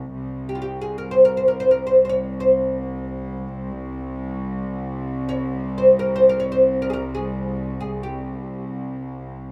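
Arabic maqam ensemble music in free time, this hypnotic, soulful excerpt rests on C maqam hijaz, tuned slightly high with A4 at 441 Hz. A bright symphonic cello section holds a low drone on C2 from the very start, bowed with vibrato and sitting quietly beneath, its tone biting and lush. At 0.5 seconds a fretless oud enters with the melody, plectrum-plucked on double strings and placed up front in the mix, moving between F4 and a raised D-flat a quarter of a semitone sharp. The oud sounds woody and deep, carrying the phrases over the sustained bowed bed. A moderate plate reverb with a 3.6-second decay surrounds the players, while the overall mix has the rough feel of a home demo, and the passage is cut from a longer piece at 9.5 seconds.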